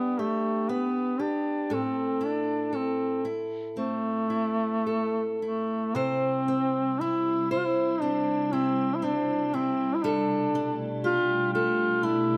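A mellow duduk sings a haunting, longing Celtic slow air up front, its vibrato and scooped notes floating freely over a fingerpicked steel-string acoustic guitar whose close, detailed sound catches the occasional finger squeak. The rubato pace hovers around 59 BPM as the harmony moves from G and A minor to C and Gadd9, all in light reverb. At 6.7 seconds a soft, organ-like pad with a slow attack fades in beneath them, its detuned, chorused and reverberant chords adding a calm, full-bodied glow to this passage from a longer piece.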